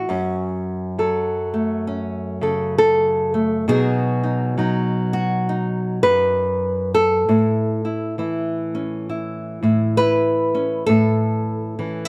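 Gentle and warm, this brief fragment of a longer folk piece offers a calm moment for solo fingerstyle acoustic guitar. A single nylon-string guitar, fingerpicked and sitting up front in the mix, carries the whole performance from start to finish at an unhurried pace in 4/4, with softly swung eighth notes. Its small, warm tone moves through F#m, then B at 3.7 seconds, and settles on A at 7.3 seconds, ranging from deep bass notes up into its middle register. The phrase begins to repeat at 10.9 seconds just before the recording is cut off. A moderate studio reverb with a large-room feel gives the guitar a soft halo, and the overall production leans dark and warm.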